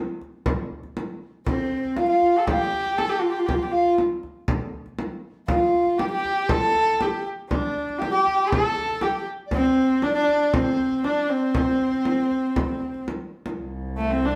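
Mongolian traditional folk with a galloping, vast mood, cut from a longer piece: a deep frame drum struck with hard hands opens at 0.2 seconds, a bright, nasal horsehead fiddle with light vibrato and portamento carries the bowed melody up front from 1.5 seconds over an airy bamboo dizi with a buzzing membrane in the background, and a reedy cello drone on C2 arrives at 13.6 seconds, the band playing live in one room under a large, wet studio reverb.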